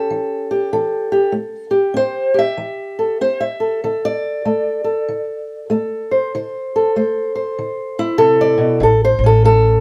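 A swung 4/4 groove at 96 BPM drives this gritty, soulful acoustic country blues fragment, where a dark, boxy fingerpicked ladder-braced guitar on old strings carries the melody up front over chords moving from A7 to D5 in a moderate room reverb, and a woody pizzicato upright bass joins at 8.8 seconds as the chords settle on A.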